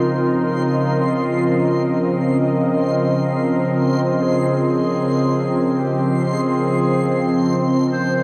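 This spacious, reflective ambient excerpt opens on a Db chord from an analog pad, which sits up front and holds sustained chords from Db3 to Eb5 across the full 8.2 seconds. The pad has a smooth, warbling, vintage character, with detuned sawtooth and triangle tones, a soft attack, a long release and a lush chorus. Alongside it, a mellow clarinet plays a classical-style solo melody between Eb4 and C5, set in the background and coloured by a cassette tape effect. High above, a reversed, swelling texture hovers on C6, dreamy and bright with a granular grain and its own built-in reverb. In free time and tuned to A4 = 441 Hz, the home cassette recording is bathed in a wet hall reverb, leaving a hazy, suspended atmosphere that feels lifted from a longer piece.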